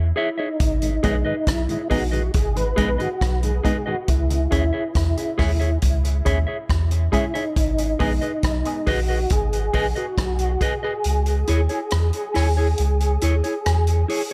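A deep, round sub bass opens this hypnotic dub reggae excerpt in G# minor at 69 BPM, soon joined by a mellow tonewheel organ melody with chorus vibrato, slow rotary speaker and dub echo, and by a dark, clean electric guitar that also trails dub echo. A punchy vintage kit with a rolled-off top enters up front at 0.6 seconds with kick, hi-hat and rim click. Briefly in the background sit a second, lightly overdriven organ and a muted, detuned chord stab with phaser and echo, both gone by 8.2 seconds, over a slow C#m to G#m sway, and the kick drops out at 11.0 seconds.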